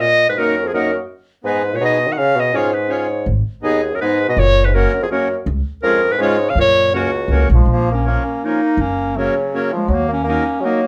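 A clear, close-miked clarinet sings the melody over a soft-attacked bassoon second line from the start, with a reedy, dry-tuned accordion filling in the chords just after and a woody pizzicato upright bass joining at 3.3 seconds, giving this jolly, bouncy alpine folk dance in F# major a swung, slightly rubato 3/4 lilt at 164 BPM, heard from further back in a small, reverberant room.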